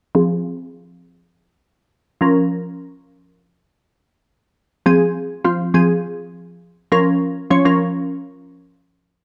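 Confident and energetic, this short pop excerpt moves at 102 BPM in a straight 4/4 feel, set in F minor. A single glassy wavetable pluck carries the whole passage alone from 0.1 to 8.6 seconds, ranging from F3 to Db5, sitting up front with a crystalline, nasal, detuned character, a fast attack and a layer of noise beneath its decaying notes. Chorus thickens the pluck, and a low-pass filter sweeps across it through the opening section, ending at 4.9 seconds as the second section begins. The harmony alternates between Fm and Bbm in both halves of the passage. A wet echo-chamber reverb surrounds the part, and the production is dark and warm.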